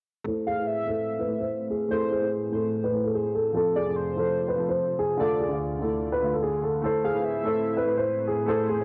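A dry, gritty hardware recording with transformer saturation and light reverb carries this cold, ominous half-time hip hop fragment, where a dark, boxy concert grand piano plays an up-front melody over a felt-muted upright piano's soft, intimate accompaniment, a glassy, ethereal FM pad holds slow-attack chords through ensemble chorus, and a velvety sawtooth synth lead with chorus, vibrato and tape echo adds a second line, while a filter sweep runs from 0.3 s as the harmony moves from Am through F and Dm back to Am.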